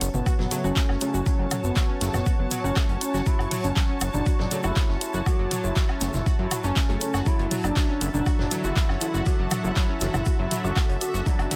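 A deep, up-front electronic kick drives this hypnotic, melancholic melodic techno cut from a longer piece at 120 BPM in F# minor, with a fat sawtooth analog bass pumping underneath, a deep house kit of handclaps, hi-hat, toms and woodblock, a background vintage kit of hi-hat, shaker and snare, a grainy egg shaker, dark woody bowed strings, a lush, gritty unison pad, a smooth, warbling portamento lead with vibrato and delay, a round, evolving pluck arpeggio, punchy brassy stabs with phaser, and a very quiet, eerie FM bell line, all in a small room as the chords move from F#m to Dadd9/F# at 7.3 seconds.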